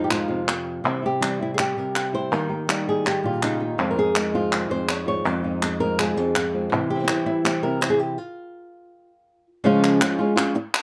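A fingerpicked flamenco guitar carries the melody up front in this intense, passionate flamenco excerpt in F minor at 164 BPM, ranging from F2 to Db5 over Fm7, C and Eb harmony. A second, warm-toned acoustic guitar plays stabs in the background, while crisp palmas hand claps sit close and detailed in a live room with light reverb. A stop runs from 8.2 to 9.6 seconds, after which the music moves to a Db chord.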